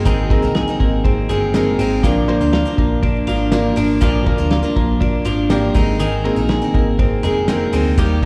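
Jangly indie pop at 121 BPM in 4/4, bright and breezy, heard as a short live club excerpt through the venue's PA with light reverb and a dusting of vinyl crackle. A twangy, compressed twelve-string electric guitar rings out arpeggios up front with slapback echo, over a picked steel-string acoustic guitar and a woody upright piano whose action noise is audible beneath plate reverb and slapback. A foam-muted, round electric bass and a cloth-damped, thuddy drum kit with dark cymbals, a fat snare and a tight kick enter at 0.1 seconds, as the harmony moves from Abadd9 to Bb and back.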